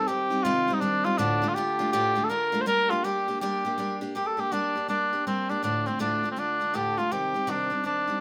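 A swung Celtic hornpipe in 4/4 at 162 BPM drives along in G minor with a wild energy, in this short cut from a longer piece. A cor anglais carries the melody up front in a classical style with light vibrato and a present, warm tone, while a picked steel-string acoustic guitar with old strings gives woody, auditorium-sized accompaniment through both halves, moving from Cm through Dm to Gm and back. The pair sit in a moderate small room with a short reverb.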